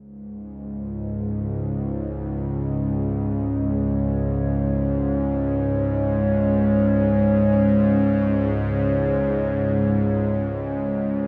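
A deep, detuned analog pad opens on sustained, chorus-thickened chords, joined at 0.2 seconds by a tense, string-like bowed drone with a sawtooth edge and vibrato, both sitting up front in a cavernous cathedral reverb that makes this dark ambient fragment, cut from a longer piece, feel moody and unsettling.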